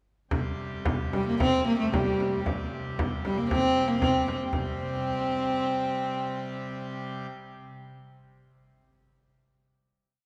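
A dark, nasal viola da gamba leads this short, mysterious medieval dance with an ornamented modal melody from 1.1 seconds, over a deep frame drum played with soft hands and a brilliant full-organ drone, all in a wet church reverb with a faint mains hum as the tempo keeps speeding up through a final chord arriving at 4.5 seconds.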